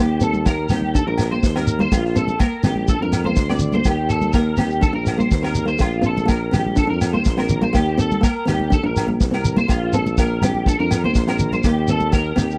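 Carefree and warm, this highlife guitar band piece moves at a straight 123 BPM in 4/4, in Bb major, cut from a longer performance. A tuba carries the bass with a punchy, smooth-topped jazz tone, its notes scooped and touched with vibrato, while an electric guitar at the edge of break-up plays twangy picked arpeggios through ensemble chorus and tape echo. In the background, a nylon-string guitar adds classical fingerpicked accompaniment, complete with the odd finger squeak. A grainy, mellow shekere enters at about 0.2 seconds and bright, damped congas played with soft hands follow at about 0.3 seconds. From about 0.5 seconds a vintage drum kit sits up front with a tight kick, a medium-tuned snare and a rolled-off top, joined by ringing, saturated agogo bells set far back. The harmony sways between Ebmaj7 and Bbmaj7 throughout, settling on Eb near 11.6 seconds, all captured in a dry, close, 1970s-style studio sound with a warm character.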